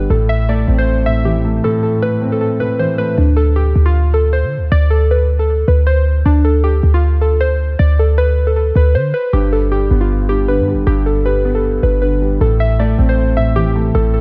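Brooding, dark trap hip hop at 156 BPM in a half-time feel, where a boomy, sine-like 808-style bass anchors the whole passage, a detuned, warbling, lo-fi pluck carries the melody through chorus and a low-pass filter, and a mellow, boxy concert grand piano with audible action noise plays only until 3.2 seconds before returning at 9.3 seconds, all set in a small room ambience over chords moving from Am to D5 to G and back to Am in this cut from a longer piece.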